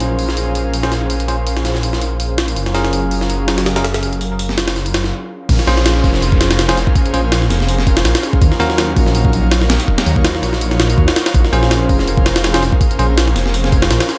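Drum and bass with a jungle edge, frenetic and dark, where a gritty, pitched-up sampler drum kit with a thumpy kick and high-tuned snare drives up front over a thick, menacing detuned saw bass, while an airy, breathy chorused pad sustains minor chords and a bell-like tine electric piano drops stabs into dub echo, a brief stop at 5.1 seconds giving way to a drop at 5.5 seconds marked by a very quiet electronic downlifter.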